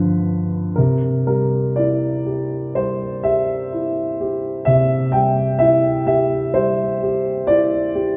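Classical solo piano in a lyrical, rubato style, this short excerpt moves at a calm 58-65 BPM in 4/4, with a dark concert grand playing alone from 0.0 to 8.2 seconds across a range of G2 to G5. The piano sounds mellow and up front, with deep bass and a boxy character, set in a recital hall reverb with a 1.6-second decay. A G7 chord at the start resolves to C at 0.8 seconds, opening a warm, unhurried passage in a tuning of A4 = 439 Hz.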